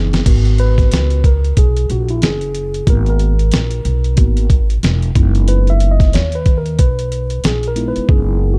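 Smoky and nocturnal, this swung jazz-hop cut opens on a drum fill before a mellow tine electric piano takes a solo from 0.3 seconds over G#m9 and F#13sus4 harmony. A woody pizzicato upright bass sits up front beside a gritty, overdriven sampler-style kit with a thumpy kick, medium-tuned snare, hi-hat and crash, the hi-hats dropping out at 8.1 seconds. The production is dark, set in a small room ambience, and it is cut from a longer piece.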